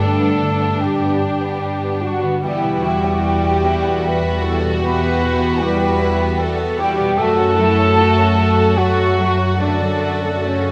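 A rich, close violin section carries the hopeful melody with light vibrato, played sul tasto, in this uplifting, emotional cinematic orchestral cue at a rubato 75 BPM in 3/4, while a hollow, mellow flute section, a background violin line and a vintage-toned clarinet weave supporting lines over a floating viola section's accompaniment; distant, dark French horns hold sustained chords, a ringing concert harp spins arpeggios, and a sul tasto cello section joins a woody double bass section on the bass, all moving through G, Emadd9 and F#m in a brief 10.7-second passage with moderate scoring-stage reverb.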